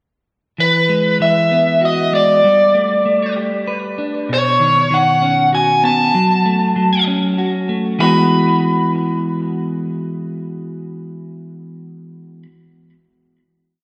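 A lush, wet hall reverb gives this short post-rock piece a big arena sound, with a digital ambience hanging around two up-front electric guitars. Set in E major at 97 BPM in a straight 3/4, the mood is euphoric and hopeful. A clean, warm electric guitar picks arpeggios through spring reverb and tape echo, while a dark, biting overdriven lead guitar, also treated with tape echo, sings a motif-based melody built from hook phrases high above it. Both guitars enter at 0.6 seconds and move through Eadd9, Gadd9, Badd9 and F#m before settling on a final Eadd9 chord at 8.0 seconds. The lead stops at 12.4 seconds and the arpeggios ring out until 12.5 seconds.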